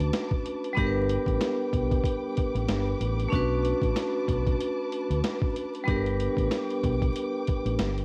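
Dark and gritty, this boom-bap hip-hop excerpt moves at 94 BPM in 4/4 with a 57% swing on the sixteenths, its chords shifting between Bm7 and G. A compressed, sampler-style drum kit sits up front with a thumpy kick, a medium-tuned snare and hi-hat, re-recorded in a small room and run through cassette tape. A deep, round fingered electric bass holds the low end between G1 and D2, dark and direct. A vibraphone struck with hard mallets carries the accompaniment in a metallic, ringing tone with slow motor vibrato, its boxy small-room sound filtered and taped. Far behind, a bowed studio string section sustains chords with soft attack, vibrato and portamento, its tone also filtered and passed through cassette. The whole track is dry, with the character of a home cassette recording and a layer of vinyl crackle.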